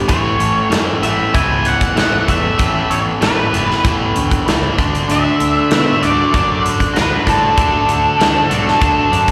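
A bright, twangy twelve-string electric guitar opens with clean, compressed arpeggios from the background, colored by phaser, slapback echo and analog delay, alongside an up-front overdriven semi-hollow guitar riff with its own slapback echo. Within a fraction of a second the rest of the band arrives: a dark, distorted octave-fuzz lead guitar carries the melody through slapback echo and analog delay, a round fuzz-driven electric bass holds the low end, and a big acoustic rock kit hits with a punchy kick, medium-tuned snare and hi-hat placed up front. This is quiet-loud alternative rock at 96 BPM in a straight 4/4, with an anthemic, cathartic mood. The harmony moves from Aadd9 to D at 4.8 seconds, and the whole short cut from a longer piece stays in one section. It sounds like a live gig heard through the venue's PA, with a light recital-hall reverb around the band.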